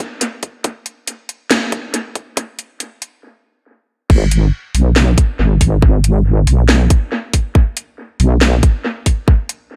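A dry, echo-soaked mix with little reverb gives this brief cut from a longer deep dubstep piece a close, heavy and brooding character, set in a swung half-time feel. A tight, layered electronic kick and a garage drum kit with a cracking snare, warm hi-hats and crash cymbal sit up front from the start, both carrying the boxy air of a small room, with an analog delay trailing the kit. The opening build-up halts at 3.2 seconds, leaving a brief stop before the drop lands at 4.1 seconds. There the wobble bass enters low and up front, a saturated, compressed blend of detuned sawtooth and sine layers with a fast attack, sustained body, mellow chorus and pronounced wobble. The bass holds until 8.6 seconds while the drums carry on beneath the echoes.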